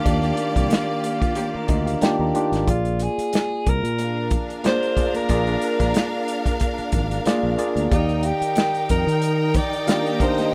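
A dry, rough home-demo sound frames this lush 1970s-style soul cut at 92 BPM in Eb major, where a breathy, distant alto saxophone sings the melody with tape echo over a bright, bowed string section, a barky, lightly overdriven tine electric piano that adds a fill at 1.4 seconds, a growly fingered bass, an up-front drum kit with a tight kick, very quiet high-tuned congas, and a slightly broken-up electric guitar riff with tremolo that appears briefly at 1.2 seconds and again near the end, moving from Ebmaj9 to Bb7 and back.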